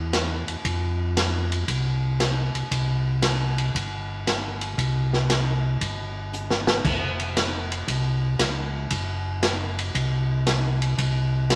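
Greasy and soulful, this short soul jazz organ trio excerpt moves at 116 BPM in 4/4 with a swung eighth-note feel. A mellow tonewheel organ carries the bass line from the very start, its round, dark, clean tone colored by vibrato, key click and a slow rotary speaker. A swinging big-band drum kit joins at 0.1 seconds with crash cymbal, hi-hat, kick drum, ride cymbal and snare drum, sounding acoustic, airy and polished, with a medium-tuned snare and a punchy kick placed up front. The drums break into a fill from 6.3 to 6.8 seconds before the groove carries on. A wet studio ambience with a short half-second decay surrounds the pair, giving the kit a hall-like sheen.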